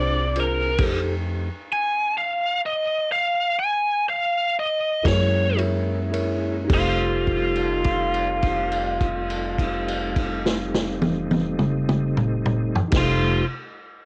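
A biting, overdriven lead guitar sits up front, carrying the melody through this soulful, laid-back slow blues in 12/8, cut from a longer piece and slowing down over its first 6.7 seconds before a held note sustains from 6.7 to 12.9 seconds. Around it, a clean tine electric piano with phaser adds accompaniment and a fill from 5.1 seconds, while a smooth tonewheel organ holds chords through a slow rotary speaker and chorus vibrato, over a woody, thumpy pizzicato upright bass and a vintage drum kit with a punchy kick and dark cymbals entering at 0.4 seconds. The sound is a small-room home recording on cassette, its top rolled off and the tape lending a hazy, worn character to the guitar, keys and drums.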